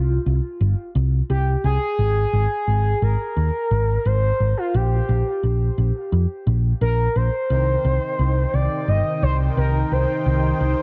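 A dense, heavily limited modern master with light reverb frames this short synthwave excerpt in C minor, moving at 87 BPM in a straight 4/4 with a driving, moody feel. Up front from the start, a dark, round hollow-body short-scale electric bass, picked and amped, holds the low end between G1 and F2 until 10.7 seconds. Over it, an expressive portamento lead with a smooth sawtooth tone, vibrato, subtle chorus and tape echo sings the melody between F4 and Eb5, sitting close to the listener. The harmony moves through C5, Ab5 and Bb5 before settling on C minor at 7.5 seconds, where a soft, mellow supersaw enters with detuned unison voices, a moving notch and sustained chords spanning C3 to G5. The piece is cut from a longer work, ending at 10.8 seconds with the lead and pad still sounding.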